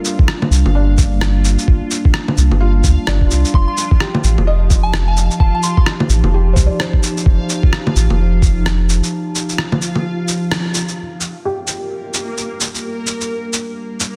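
A dense, heavily limited mix with light reverb carries this wistful, ghostly future garage piece in G minor at 129 BPM, its 16ths swung and its sidechain pumping breathing through the muted, intimate felt piano (low-passed, delayed, with audible action noise), the warbly, lo-fi tape-like pad and the round sine sub bass. Up front, a thumpy, overdriven, pitched-down kick sits alongside muffled, sampler-style shaker, rim click, bongos and cabasa, while a reversed, granular backwards texture shimmers brightly beneath and a pure FM synth bell with chorus and dub echo appears at 3.5 seconds over the move from Gm7 to F7. The kick and sub bass have dropped out by 9.0 seconds for a break, and from 11.0 seconds a filter sweep washes over the dark, nostalgic pad as the harmony settles back on Gm7.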